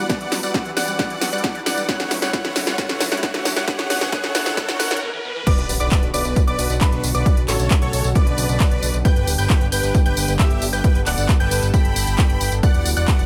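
A punchy electronic kick sits up front in a straight 4/4 feel, joined by a layered big-room kit of crisp hi-hats, snare, handclaps, tambourine and crash cymbal, with a drum fill running through the opening build-up. This bittersweet, euphoric uplifting trance passage, cut from a longer piece, features a squelchy, resonant acid bass playing arpeggios in the background under a filter sweep through the build-up, coloured by analog chorus and dub echo, while a very quiet riser and impact add tension. After a short break at 5.0 seconds, the drop arrives at 5.5 seconds, where a fat, detuned analog bass with a mellow, sustained tone takes over the low end, pumping against the kick. From the very start, the melody comes from a huge, compressed supersaw with vibrato and dub echo, shadowed by a higher wave-folded unison pluck carrying a second line with its own sidechain pumping and echo. Beneath them a lush, airy pad with chorus sustains the chords throughout, moving from Emadd9 and Aadd9 through Bm and G, and the whole mix sits in light reverb with a high-pass filter.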